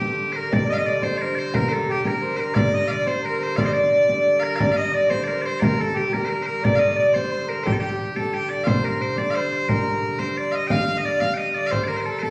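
Piercing, up-front bagpipes carry the melody of this mysterious, driving medieval dance in 6/8 at 118 BPM in G minor, joined by a smooth-topped harmonica on a second line, a reedy wheel-bowed hurdy-gurdy drone, a deep, close frame drum played with hard hands, and a pure, hollow alto recorder with vibrato and a tongued chiff that sits in the background from 0.4 to 8.5 seconds, all played live in one room under a large studio reverb as a fragment cut from a longer piece.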